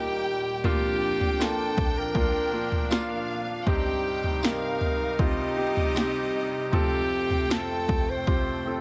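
Heartfelt and tender, this 78 BPM pop ballad in Bb major sets a clear, vibrato-rich alto saxophone melody with soft, scooped jazz-style notes up front over a lush bowed violin section line, polished baby grand piano accompaniment, and a bright, detuned sawtooth pad with chorus holding sustained chords, while a punchy, overdriven analog drum machine of kick, snare and toms enters at 0.6 s and a jingly tambourine sits in the background from 1.4 s, the whole set in light small-room reverb as the chords move from Eb through Bb and Cm to F in this short cut from a longer piece.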